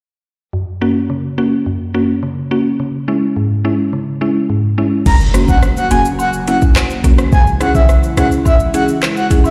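A woody, round mallet-like synth pluck opens this tough, sultry dancehall excerpt on its own over F# and C#m chords, and at 5.1 seconds a breathy flute-like synth lead with vibrato and delay, an airy detuned pad with sidechain pumping, a deep, boomy 808-style bass, an up-front electronic afro-pop kit of deep kick, metallic hi-hats, crash, handclaps, rim click and shaker, and a background impact arrive, joined at 5.3 seconds by very quiet cabasa and woodblock, all played on a big sound system in a bare stone room.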